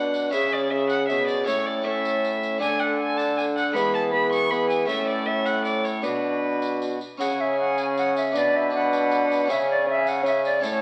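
From the opening, a small consort plays a solemn, courtly Renaissance-style dance in 3/4 at 158 BPM, with a tambourine joining at 0.1 s. Up front, the violin carries the melody with a rich, reedy gut-string tone in period style, touched by light vibrato. The tenor recorder plays a second line that is airy and woody, its close-miked, tongued notes showing a little chiff and a gentle waver. Beneath them a mellow bassoon plays an accompaniment in classical style, touched by light vibrato, and a brilliant, vintage-sounding trombone takes the bass, while a nasal, thin harpsichord plucks its part in the background and the jingly tambourine sits close and dry. The harmony moves through chords such as C#m, A, E and Bm, the opening phrase returns at 7.2 s, and the consort sounds through a damp stone room reverb and the crackle of a very old 78 rpm record in this short excerpt cut from a longer piece.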